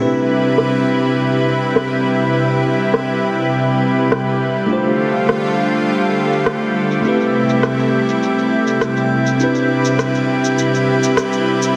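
A sunny, relaxed stretch of sunset chillout opens at 0.0 s with a tine electric piano, a lush unison pad and an electronic shaker with rim click all sounding together at 102 BPM in straight 4/4, in C major. The electric piano sits warm, clean and direct in accompaniment with a digital delay, while the thick, detuned pad holds sustained chords up front, its bright sawtooth and square-wave tone slow to bloom and long to fade under chorus. The drums are produced and overdriven, with low-pass filtering across the kit and a filter sweep running through the whole passage. From 1.0 s a glassy texture of drifting overtones floats calmly in the background, its sine tone softened by chorus and its own reverb. The chords move from Cmaj7 to F69, Am7 and back to Cmaj7, all bathed in a wet plate reverb, though the heavily compressed, radio-like sound carries lossy artefacts in this short cut from a longer piece.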